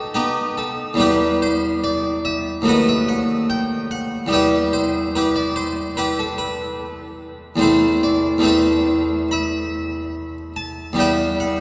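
A long, wet cathedral reverb surrounds this brief fragment of a longer piece, lending a distant, resonant sense of space around a brilliant, plucked harpsichord that still sits up front. The solo Italian-style instrument, with its ringing octave strings, plays a solemn, flowing baroque suite movement in four, shaped with rubato. Its harmony settles through a dominant-seventh opening and a turn to the minor subdominant before coming to rest on the home chord at 11.0 seconds.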